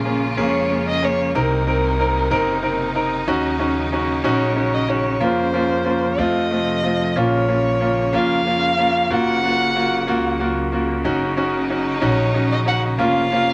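A melancholic, dramatic pop ballad in 6/8 and Bb minor, this short passage cut from a longer piece moves at a slow 62 beats per minute counted in dotted quarters. A bright, brilliant concert grand piano sits up front with the accompaniment from 0.1 seconds, its deep bass and smooth tone carrying a vintage character. From 0.4 seconds a dark, woody solo violin takes the melody, bowed with vibrato and a smooth top, sharing the foreground with the piano. Beneath them a rich studio string section holds sustained bowed chords in the background, even and smooth with vibrato, while a pizzicato upright bass on steel strings adds a growly, woody low end. The harmony drifts from Bbm7 through Cm7b5 and Ebm7 to a brief F before settling back on Bb minor, then passes through Gbmaj7 and Ebm7/Gb to close on Bbm/F, all set in a moderate small-room reverb.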